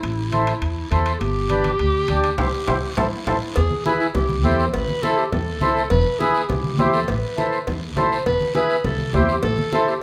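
A reedy, mellow accordion sits up front in this driving, fiery Latin cumbia, entering at 0.3 seconds as accompaniment while a present clarinet with jazz-style vibrato carries the second line. Woody pizzicato upright bass anchors the low end alongside raspy guiro, bright, damped congas and ringing timbales and cowbell kept close and dry in the background. A band accent at 2.4 seconds and a drum fill lead into a new section at 3.6 seconds, all within a moderately reverberant large studio in this passage cut from a longer piece.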